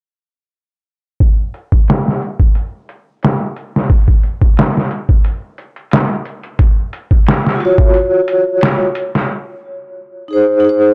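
The recording is blown-out and overdriven, with a dry, close sound and little reverb. This melancholic, brooding trip hop fragment, cut from a longer piece, begins at 1.2 seconds with a sampler-style drum kit: a thumpy, muffled kick, a medium-tuned snare and filtered hi-hats, all pitched down, compressed and roughened by vintage 12-bit grit, as if re-recorded in a small room. The 16th-note swing gives the beat a slightly loose, lazy feel as the harmony moves from an open, chordless start to Dbadd11/F. At 7.6 seconds a mellow vibraphone played with soft mallets enters up front, its metallic, ringing tone shaded by tremolo and tape echo. When the drums fall away at 9.3 seconds for a short break on Ab, the vibraphone carries on by itself to the end.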